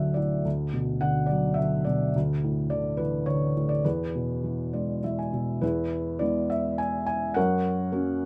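A felt-muted upright piano carries this short classical excerpt alone, its soft, mellow tone sitting up front with audible action noise that makes the playing feel intimate. The mood is hopeful and sunny, moving at 105 BPM in 3/4 with a rubato feel, and the instrument is tuned slightly low to A4 = 439 Hz. Chords pass through Bm/D, Dsus2 and E in the opening section, and a brief piano fill from 4.4 to 5.6 seconds leads into a second section at 5.6 seconds that reaches F# at 7.4 seconds. The piano spans from D2 up to G#5, giving the lyrical line a gentle, rounded body. Close, detailed microphones and a nearly dry room keep every felt-dampened note close to the listener, as though heard from beside the instrument.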